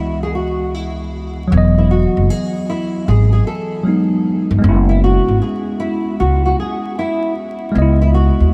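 A worn, slightly out-of-tune tine electric piano and a fingerpicked nylon-string guitar open this nostalgic, hazy lo-fi hip hop excerpt, with the full-bodied guitar melody softened by lush chorus and delay beneath a layer of vinyl crackle and light reverb. At 1.5 seconds a woody, growly pizzicato upright bass enters up front as the loudest part, grounding the swung sixteenth-note feel. The harmony drifts through jazzy seventh, ninth and suspended chords.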